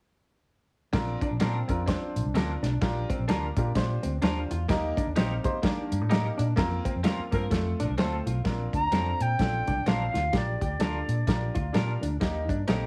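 Uptempo 1960s-style soul with an uplifting, warm mood and a swung feel, cut from a longer piece. Up front, a dry, dark drum kit with a tight kick and a medium-tuned snare sits beside a round, punchy, foam-muted electric bass, while a woody, slightly detuned upright piano fills in the accompaniment from 0.9 seconds. A clean, hollow-body jazz guitar carries a riff, and a twangy, slightly broken-up electric guitar through a small old amp adds lo-fi stabs. During a band accent, a bright saxophone section, treated with tape echo, slips in a brief second line at 7.3 seconds. In the second section an airy, reedy concert flute takes the melody from 8.7 seconds with a straight, tongued tone. The mix has a heavily compressed radio sound with small room ambience and moderate reverb.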